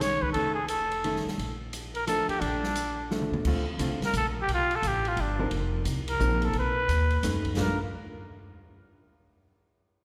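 A swinging 3/4 lilt at 174 BPM carries this sophisticated small-group swing and bop fragment in Bb major, cut from a longer piece, with an airy acoustic drum kit of dark cymbals and a boomy kick dropping in a fill at 3.1 seconds. Up front, a raspy, growling trumpet with vibrato sings the melody over a woody, thumpy pizzicato upright bass on gut strings and a clean, compressed hollow-body electric guitar voicing chords like Faug7, Bbmaj7, G9 and B9. The group sits in the lingering wash of a reverberant concert hall.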